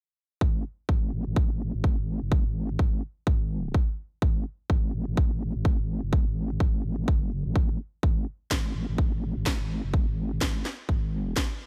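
A dry, tight mix with little reverb puts an aggressive, bouncy bass house groove up front, its sixteenths swung, with a punchy, layered electronic kick carrying a touch of small room ambience. Alongside it, a dark, nasal vowel-sweep wobble bass rumbles low, its formant-filtered tone thickened with chorus and overdrive and pumping against the sidechain. A cracking electronic snare joins at 8.5 seconds before this fragment of a longer piece cuts off.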